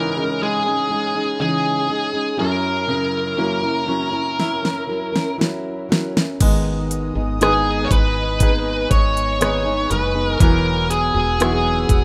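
A rough home-demo mix with moderate studio reverb frames this longing, emotional pop ballad excerpt in G# minor at a slow 60 BPM in straight 4/4. A distorted, high-gain lead guitar carries the melody up front over brilliant, short-sustained grand piano and full-bodied fingerpicked jumbo acoustic guitar arpeggios touched with delay, moving through C#madd9 and F#7. A layered, tape-warm electronic drum kit with a knocking kick, fat snare and crisp hats arrives with a fill at 4.4 seconds, a round, hollow-toned fretless bass with analog chorus enters at 6.4 seconds as the harmony shifts to G#m and Eadd9, and a soft, breathy, warbling vintage pad with chorus drifts in behind at 6.8 seconds.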